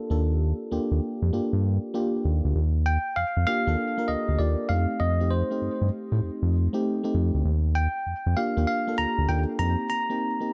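A swung 98 BPM new jack swing groove in 4/4 sets an upbeat, flirty R&B mood in this brief excerpt, with a glassy, chorused FM electric piano comping over Ebmaj9 and F7 while a round, deep analog bass sits up front beneath it. At 2.9 seconds a bright, bell-like tine electric piano enters with the melody, trailed by tape echo, before a short break at 9.9 seconds lands on F9sus4. Digital ambience gives the production a dark, warm feel.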